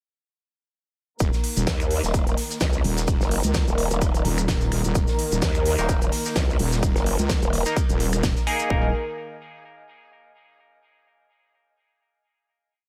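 Aggressive and swaggering, this bass house piece runs at 128 BPM in 4/4 with a light swing on the sixteenths, and it consists almost entirely of one drop before a final chord rings out from 8.7 seconds. A punchy, tape-warm electronic kick sits up front in a four-on-the-floor pattern, layered with a big-room dance kit of crisp programmed hats, finger snaps and a huge snare on the backbeat, while a very quiet acoustic kit played with bundle sticks adds a looped, edited breakbeat of hi-hat, ride and snare. Grainy, mellow maracas shake out hand-played sixteenths underneath. The low end is driven by a heavy, saturated wobble bass built from detuned square and sine tones with chorus, joined at 1.7 seconds by a growling, formant-filtered bass that answers it, both sidechain-pumped and shifting their wobble speeds. Above them, a dark, veiled con sordino string section holds sustained chords with vibrato, filtered and pumping in the background. 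From 5.8 seconds a nasal, band-passed chord stab enters with sparse, echoing hits moved in parallel, its bright phaser-coloured tone cutting through the small room ambience.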